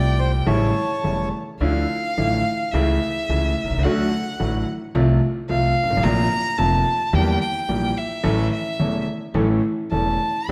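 A clear, focused violin sings up front with vibrato and takes a solo from 1.6 s in this nostalgic, passionate tango fragment, after a reedy, dark bandoneon melody that stops at 1.3 s, all set in a free rubato feel over a brilliant concert grand piano with deep bass and a thumpy, woody pizzicato upright bass on gut strings, bathed in the wet reverb of a recital hall.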